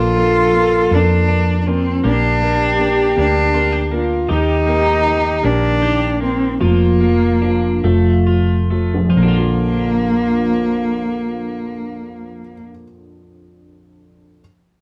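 A moderate studio room captures a band playing live together in this tender, swaying six-eight pop ballad fragment, which slows down between 4.3 and 9.2 seconds. Up front, a nasal, boxy solo cello carries the bowed melody with vibrato and portamento, while a French horn section adds a classical-style second line with light vibrato. A round, amped hollow-body electric bass anchors the low end, and a clean, compressed twelve-string electric guitar picks arpeggios through a harmonic tremolo; in the background, a mellow, worn upright piano with audible action noise and slight detuning accompanies and carries on by itself until 14.4 seconds.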